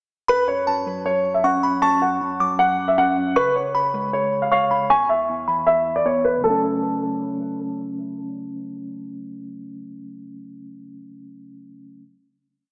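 A low-passed, AM-radio filtered sound in a lush hall carries this eerie, brooding half-time trap piece in F# minor at 156 BPM, where a dark, up-front grand piano loops its melody and a tinkling FM bell adds a sparse, chorused counter-melody until 7.6 seconds, while a clean electric piano arpeggiates in eighths through a filter-swept breakdown and continues through the final chord, playing on to 12.0 seconds.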